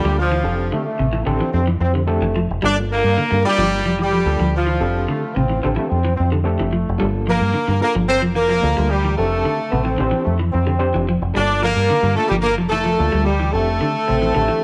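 A small, lightly reverberant room holds this funky, hypnotic afrobeat fragment at 110 BPM in G dorian, cut from a longer piece, where a deep, foam-muted fingered bass sits up front alongside a punchy horn section whose octave-doubled melody carries tape echo. Beneath them, a raspy alto saxophone with scooped notes and a clear trombone section entering at 0.7 seconds add second lines, while a reedy, overdriven electric piano with medium tremolo comps through a combo amp. A dark, clean electric guitar picks arpeggios through lush chorus over a steady sway between F6 and Gm7.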